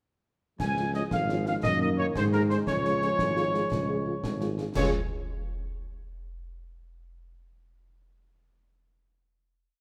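A spirited, proud military-style march for wind band in a straight 6/8, complete in just a few seconds, with a clear trumpet section carrying the melody up front while the trombones hold present, sustained chords behind. A mellow, close-miked French horn section enters at 0.8 s with tight after-beat chords, and a distant, roomy tuba with light vibrato sounds the bass on the beats. Marching snare rides over bass drum on the beat, with dark clash cymbals, and a moderate scoring-stage reverb rounds out the sound before the piece settles on a final chord at 4.8 s.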